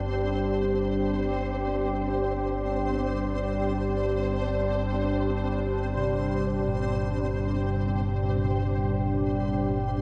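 Dark ambient drone in free time, unsettling and ominous, built on a deep, rumbling low drone and a moody, detuned sawtooth pad with chorus holding sustained chords up front. A grainy, flickering granular texture hovers alongside them, while from 6.0 seconds a bronze singing bowl plays soft, mellow arpeggios in the background, its metallic ring slowly beating through a diffuse delay. The whole passage sits in a huge, wet reverb, cut from a longer piece.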